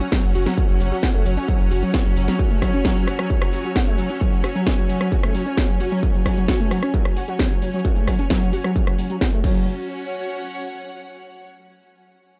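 A dry, gritty recording with a cassette-tape grain opens this dark, driving slice of peak-time techno at 132 BPM in a straight 4/4, centred on F#. A distorted electronic kick sits up front, backed by a layered techno kit of cracking snare, metallic hats, rim clicks, shaker and crash cymbal. A screaming, guitar-like synth lead carries the riff between F#3 and F#4, its sawtooth and square tones pushed through distortion, ensemble chorus, analog delay and sidechain pumping, with vibrato on top. A deep, saturated sub bass holding F#1 pumps briefly in the background from 0.2 to 2.3 seconds, while a swarming, detuned drone hovers very quietly beneath, nasal and tense with its own granular haze. A lush, bowed string section played sul tasto adds an intimate, smooth-topped texture that pumps with the kick and carries on alone after the drums drop out at 9.5 seconds and the lead at 9.7 seconds, closing this fragment of a longer piece at 11.4 seconds.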